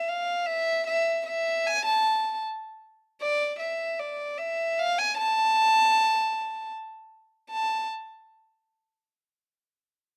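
In a straight 3/4 at 77 BPM, this short fragment of a longer klezmer piece unfolds in a soulful, bittersweet mood. A lone bowed violin carries the solo from the start until 7.9 seconds, staying between D5 and A5. Played sul tasto with a soft attack, its tone is pure and floating, and it sits up front in the mix. A slapback echo trails the violin. The recording is dry and open-air, with little reverb, and the music moves into a new section at 7.5 seconds before the clip ends at 9.8 seconds.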